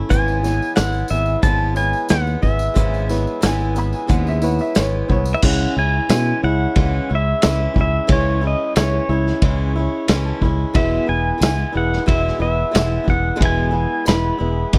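A bright, twangy pedal steel guitar carries the melody with volume swells in this hopeful folk rock and heartland rock excerpt at 90 BPM. It rides over a round, up-front fingered bass and a vintage drum kit with a punchy kick and dark cymbals in a small, pumping room. A boxy, picked swing-style acoustic guitar and a barky, reedy electric piano fill out the accompaniment, with the electric piano adding a fill from 9.4 to 10.8 seconds, while a distant tambourine jingles in the background and a woody upright piano adds a brief second line from 3.5 to 5.4 seconds, all in a dry sound moving from C#m7/G# to C#m and then E.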